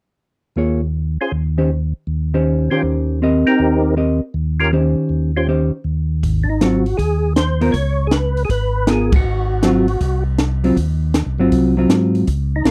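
A dark, clean hollow-body jazz guitar comps over a round, lightly overdriven tonewheel organ bass line with chorus vibrato and slow rotary speaker from 0.6 seconds, joined shortly after by a mellow, percussive second organ carrying the bluesy, soulful melody, while a compact cocktail drum kit with a high-tuned snare and tight kick enters at 6.2 seconds and the band hits an accent at 9.1 seconds, all in a swinging soul jazz organ trio excerpt with a dry, close 1970s studio sound.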